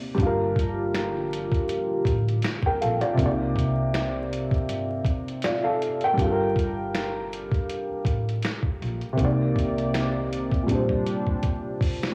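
Nostalgic and melancholic, this short lo-fi hip hop excerpt moves at 80 BPM in 4/4 with a lightly swung sixteenth-note feel in C dorian. A dark, slightly detuned upright piano sits up front with audible action noise and a mellow, intimate, vintage character, its accompaniment softened by cassette tape and a low-pass filter. A deep analog pad built from detuned sawtooth and triangle tones with a sub octave holds slow-attack chords with chorus, heard from the start until 3.2 seconds and again from 9.2 seconds. Beneath it, a woody pizzicato upright bass with steel strings plays low from 0.2 to 11.0 seconds. The compressed, muffled sampler-style drum kit, re-recorded in a large room, brings a thumpy kick, medium-tuned snare, hi-hat and finger snaps, closing with a fill at 10.7 seconds. The chords cycle between Gm7 and Cm9 before landing on Bb69, all wrapped in vinyl crackle, light reverb and the ambience of a small room on a home cassette recording.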